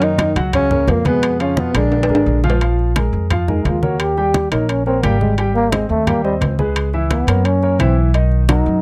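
Driving and fiery, this Afro-Cuban jazz excerpt opens with a breathy, whispered tenor saxophone melody that stops at 2.5 seconds, and from 2.6 seconds the mellow, close-miked trombone, already heard as a second line, takes a solo over short-sustain baby grand piano chords, a growly, thumpy pizzicato upright bass, low-tuned congas struck with hard hands and ringing metal-shell timbales, captured in a dry, close 1970s-style studio sound with light reverb.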